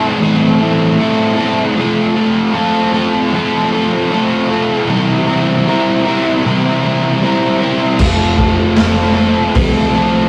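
A dark, double-tracked overdriven electric guitar sits up front playing a riff over Am, F and C7 in this hazy, blissful shoegaze and dream pop rock fragment at 77 BPM, joined at 8.0 seconds by a round, foam-muted vintage electric bass and a gritty garage drum kit with a punchy kick, all in a rough rehearsal-room recording with wet small-room reverb.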